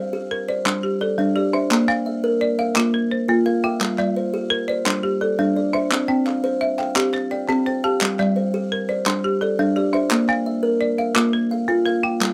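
Close, detailed microphones and light reverb capture this short, hypnotic excerpt of southern African traditional music, an mbira-style interlocking cycle in G dorian at 114 BPM in a straight 12/8. A buzzing kalimba with a hollow, boxy ring and thumbnail pluck plays arpeggios alongside a bright, rustic folk marimba struck with hard mallets on dry hardwood bars, both up front and cycling through Gm, Bb and C. A group handclap with a human, hollow small-room sound joins at 0.7 seconds, adding trance-like percussion to the repeating pattern.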